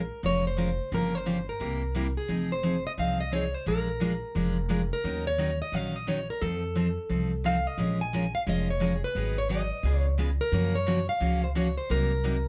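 A picked, plugged-in parlour steel-string guitar carries the melody up front with a slapback echo, leading this fiery, bittersweet fragment of jazz manouche swing in Bb minor at 175 BPM. Beneath it, a pizzicato upright bass with dark, thumpy gut strings plays from the start, and a bright, full-bodied jumbo steel-string guitar with fresh strings and audible finger squeak enters as accompaniment at 0.2 seconds. Light reverb and close, detailed microphones frame the trio as the chords move from Bbm7 through Gm7b5 and C7, then on through Fm7, Bb7 and Ebm7 toward Gbmaj7 and Cm7b5.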